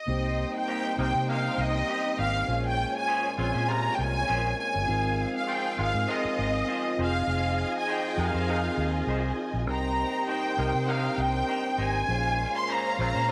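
A lightly swung 4/4 soul groove, cut from a longer piece, sets a silky, cinematic mood: a close, lush violin section carries the melody over a smooth bowed string section's second line, mellow tine electric piano, a round, punchy foam-muted bass up front, distant dark French horns holding chords and a very quiet ringing vibraphone, while a twangy, slightly broken-up guitar riff enters at 0.7 seconds and tight vintage horn stabs join at 1.0 seconds, the whole blend set in moderate spring reverb over a Cm7–Bbm9–Ab6–Fm7 progression.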